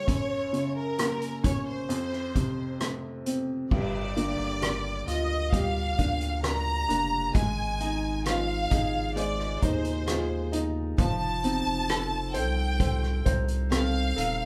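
A slow, straight 4/4 pulse at 66 BPM carries this hopeful, heartfelt pop ballad fragment, where soft-mallet drums with dark cymbals and a punchy kick sit up front beside a lush, bright violin section singing the melody over clear, woody upright piano, until at 3.7 seconds a fingerpicked nylon-string guitar with audible finger squeak joins in the background alongside a deep, saturated sub bass, all set in a moderate large-room reverb.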